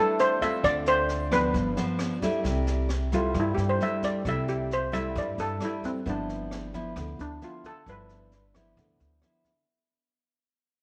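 Sunny and breezy, this straight-feel bossa nova fragment in C major at 133 BPM sets a bright, shimmering steel pan, struck with hard rubber sticks and taking a solo from 2.4 seconds, over fingerpicked nylon-string guitar with a deep classical tone, a woody, thumpy pizzicato upright bass on gut strings, and a natural small-room brush kit with a high-tuned snare, rim clicks and a boomy kick, all set in a moderate echo-chamber reverb as the music fades out from 2.4 seconds.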